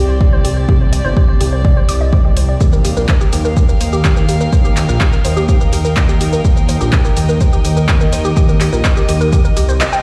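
Heard through a big sound system in a bare stone room, this cinematic, melancholic melodic techno cut from a longer piece opens on a woody, wave-folded pluck playing chorused, delayed arpeggios over a deep, rumbling detuned saw bass and a distant, reedy string section, all pumping against the sidechain. A heavy, up-front electronic kick drum enters at 0.2 s, followed at 0.4 s by an overdriven analog drum machine with handclaps, hi-hat and shaker. The harmony moves from Csus2 to Eb6 at 2.6 s, and the band hits an accent at 9.8 s.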